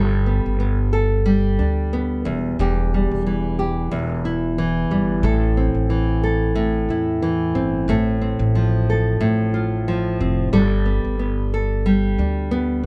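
Light reverb frames this short acoustic pop excerpt, wistful and tender at 91 BPM with a gentle sixteenth-note swing. A fingerpicked nylon-string guitar sits up front with a classical touch, while a woody, thumpy pizzicato upright bass on gut strings plays beneath it throughout. The harmony moves from Gadd9 through Em, Am and F/A before returning to Gadd9 at 10.5 seconds.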